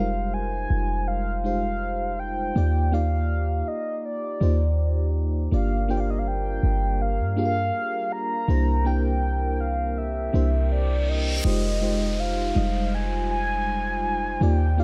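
Set in a digital ambience, this sensual, moody contemporary R&B excerpt in F dorian moves at 81 BPM with a light sixteenth-note swing over Fm7, Ebmaj9, Gm7 and C7. A deep, boomy 808-style bass sits up front beside a round, horn-like synth lead with chorus and vibrato carrying the melody, while an FM electric piano with tremolo supplies full-bodied accompaniment and a glassy, ethereal glass harmonica holds sustained chords in the background. A reverse cymbal and downlifter enter at 10.8 seconds, leading into a new section at 11.4 seconds that returns to Fm7.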